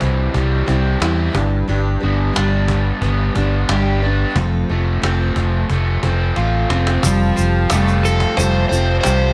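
A dark, overdriven slide guitar cuts in up front at 8.1 seconds over a warm, open-road folk and heartland rock groove at 90 BPM, where a double-tracked raw garage guitar riff, a full-bodied jumbo acoustic with finger squeak, a round, amped fingered bass and a woody, hard-handed cajon ride C, G and F chords through a light small-room reverb before a drum fill at 6.4 seconds opens onto an Fadd9 chord, a reedy, breathing pedal harmonium in the background and a grainy tube shaker from 7.0 seconds.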